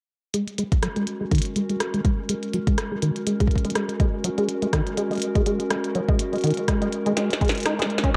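An up-front deep electronic kick anchors this melancholic, glitchy IDM fragment at 123 BPM with a light swing, as a rubbery, saturated acid bass plays arpeggios through a resonant filter sweep, a glitchy kit of clicky hats, tiny snare, rim clicks and percussion blips scatters dub echoes, and a warbling, nostalgic tape-like pad holds a mellow, detuned C#sus4 chord from 0.6 seconds, all set in a springy, echo-heavy mix that closes on a drum fill at 7.2 seconds.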